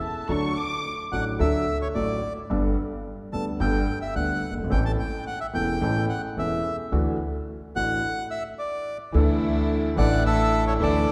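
A reedy, up-front bandoneon carries the melody of this passionate, playful tango fragment from 1.1 seconds onward, its shadowy voice sitting in a moderate 108 BPM, 4/4 pulse that bends freely with a rubato feel in D major. A brief opening figure from a studio violin section, bowed with vibrato, portamento and a smooth top, sets an expressive tone before the bandoneon takes over. Beneath, a clear, slightly worn baby grand piano plays open, long-sustaining accompaniment while a woody, thumpy pizzicato upright bass anchors the low end, moving through D, Gadd9, A and Dadd9. The ensemble pauses at 8.0 seconds, and at 9.1 seconds a rich, earthy chamber string section enters with bowed stabs over a Dsus2 chord. The whole performance is bathed in a wet, resonant concert-hall reverb that gives the cut a spacious, churchlike sound.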